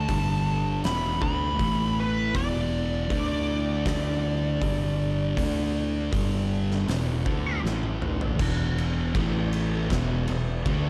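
A dark, warm small-room sound frames this brooding, ominous stoner and doom metal passage, cut from a longer piece, where two thick, distorted fuzz guitars grind out the riff in the background over a bright, growly picked bass and an oversized low-tuned drum kit with a boomy kick, fat snare and dusky cymbals in a big, pumping room. A fuzz lead guitar carries the melody through wah, distortion and digital delay until 7.6 seconds, when a drum fill leads into a new section at 8.4 seconds. Underneath, a very quiet, silky vintage string machine holds soft, slow-swelling chords with an ensemble chorus shimmer.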